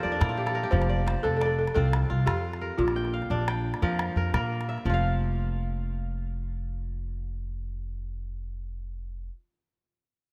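Soaked in lush hall reverb for a dreamy haze, this joyful, hypnotic fragment of West African string and xylophone music moves at 116 BPM in 12/8: crisp, ringing fingerpicked kora arpeggios sit up front and open with a brief fill, a dark pizzicato upright bass on steel strings anchors the low end, a buzzing, airy balafon played with soft rubber mallets carries the tape-echoed melody until 4.5 seconds, and a small calabash adds percussion from 0.2 to 5.0 seconds over chords of Bb and F.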